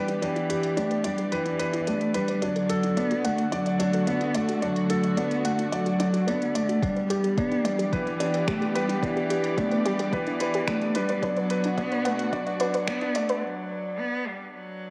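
Dark, warm production in a small echoing room carries this cinematic, moving piece of piano and strings electronica in E minor at 109 BPM, cut from a longer piece and built as a build-up over Em7, D and Bm. Up front, a dark, expressive solo cello sings the melody with vibrato and portamento beside a mellow felt-muted upright piano riff whose action noise is audible, while a veiled con sordino string section holds sustained chords and a soft, round, detuned pluck warbles through chorused, echoing arpeggios in the background under a filter sweep. Crisp hi-hats and finger snaps from an organic electronic kit tick along, a deep overdriven electronic kick joins at 6.8 s, and most parts drop out at 13.4 s for a brief break that leaves the cello and piano.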